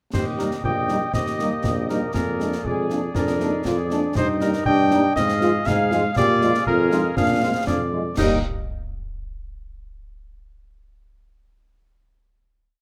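Spirited and festive, this short, complete military-style march for wind band moves at 119 BPM in a straight 2/4 in Eb major, closing on a final Eb chord at 8.2 seconds. A mellow, punchy cornet carries the tune up front with a smooth top, while a euphonium with light vibrato and a soft attack sings a counter-melody in the background. The woodwind section plays tight chords in the rhythm of the tune, and the tuba, slightly vintage in colour, holds the bass on the beats. From 0.4 seconds a dark French horn section adds very quiet, distant after-beat chords, and a dark trombone section punctuates with short accented chords in the background. Concert snare drum, clash cymbals and concert bass drum keep a marching snare over a bass drum on the beat, the cymbals dark in tone, all set in a moderate large-studio reverb.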